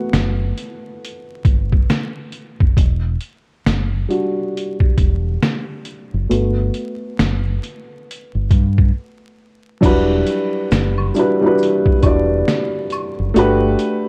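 A swung sixteenth-note groove in 4/4 drives this nostalgic, hazy lo-fi hip hop fragment, cut from a longer piece. A compressed, pitched-down trip hop sampler-style drum kit sits up front, with a thumpy kick, medium-tuned snare, hi-hat and crash cymbal all sounding muffled. Beneath it, a deep dub fingered electric bass plays round and punchy, with a direct, amped tone. A dark upright piano carries the harmony and takes a solo through the opening; it is mellow, woody and intimate, with audible action noise, short sustain and a cassette-tape character, moving between Gmaj9 and Em9. After a break at 8.9 seconds, faint, band-limited maracas and woodblock join in the background at 9.8 seconds. Light reverb, vinyl crackle and a dark, warm production give the whole fragment its hazy feel.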